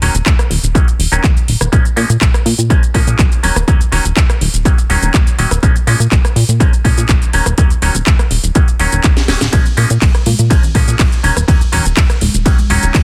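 Sensual and funky, this filtered disco house clip at 123 BPM rides a straight 4/4 groove that alternates between Ebm7 and Bbm7, with a twangy, nasal clav phased and pumping against the sidechain while a plucky, wave-folded analog bass carries the low end. A punchy, up-front electronic kick enters at 0.3 seconds, anchoring a layered house kit of cracking snare, metallic hats, ride, rim clicks, shaker and handclaps. After a drum fill at 9.2 seconds, hard-handed tambourine and congas join in the background at 9.5 seconds, all within a dry, dense and heavily limited mix.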